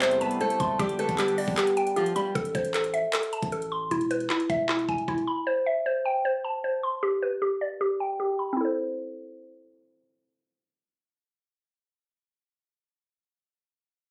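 A half-time trap beat at 154 BPM in A minor opens this brooding, hard-hitting hip hop fragment, with a knocking kick, metallic hats and handclaps from an electronic kit (the kick briefly muted), a punchy sine-based 808 bass, a bright fingerpicked nylon-string guitar melody up front with tape echo, a smooth detuned sawtooth pad with slow attack, and a woody, warbling FM mallet-like pluck with chorus. The guitar and pad fall away at 2.3 s, a filter sweep follows, and the drums and bass drop out at 5.3 s, leaving the mellow pluck alone over C6, G and Am chords, all captured on a phone in the room with light reverb and compression.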